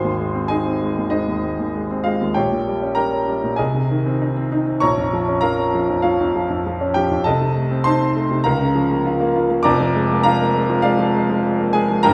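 Flexible rubato pulls at a 4/4 pulse around 99 BPM in this sparkling, brilliant classical piano study, cut from a longer piece and tuned to A4 = 441 Hz. A clear, up-front grand piano plays solo across the full 12.1 seconds, spanning F1 to D6 with a present, long-sustaining tone, moving from Ab through diminished passing chords to Bbm and closing on Bb7/F. The piano sits in a wet recital hall reverb with a 1.4-second tail.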